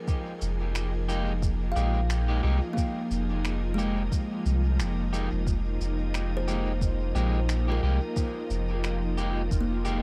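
Hazy and meditative, this ambient dub fragment in F minor moves at 89 BPM in 4/4 with a light swing on the sixteenths, resting on a single Fm11 chord. A soft, organ-like pad holds sustained chords with a pure, full-bodied tone, its detuned shimmer thickened by ensemble chorus and its own reverb, while a woody kalimba plays arpeggios in the background, its thumbnail plucks ringing into dub echo. An up-front electronic kick and a round, deep sub bass anchor the low end. Muffled, pitched-down shaker and finger snaps sit low in the mix with a tape-softened, sampler-style character. From 1.1 seconds an electric guitar at the edge of break-up adds picked stabs roughened by vintage 12-bit grit and trailed by dub echo. At 5.5 seconds a very quiet, resonant bubbling texture of random filter steps joins, all within a digital ambience that lends the piece a spacious haze.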